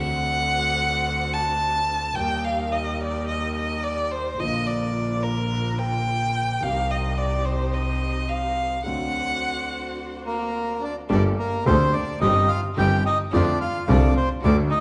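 A church-like recital hall wraps this tango in a lush reverb, giving its passionate, sultry mood a spacious glow. At 108 BPM in 4/4, played with a free, rubato feel, it opens with an expressive bowed violin solo, up front and warm, sliding between notes with a soft attack and singing vibrato over a progression that moves from D7 through Eb, Bb and Cm. Beneath it, an intimate concert grand piano adds smooth, vintage-toned accompaniment with deep bass and audible action noise, while a clear, intense bowed double bass anchors the low end with light vibrato. A rich, focused chamber string section sits in the background, adding bowed stabs. A break arrives at 8.9 seconds, and at 10.3 seconds a reedy, dark bandoneon enters up front to carry the melody into a new section built on Gmadd9, Cm/G and F6, its boxy tone set apart from the hall's bloom. The passage is cut from a longer piece.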